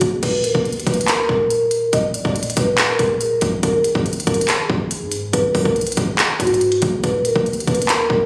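A half-time 4/4 trap beat at 141 BPM drives this menacing, hard-hitting hip hop excerpt in Eb harmonic minor, where an up-front electronic drum kit with a hard-clipped kick, crisp hi-hats, handclaps and crash cymbal hits hard over a deep, boomy sine 808 bass with fast-attack, decaying notes, while a metallic, ringing soft-mallet vibraphone with slow motor vibrato and delay carries the mellow melody, all heard through light reverb and digital ambience in a phone recording of the room.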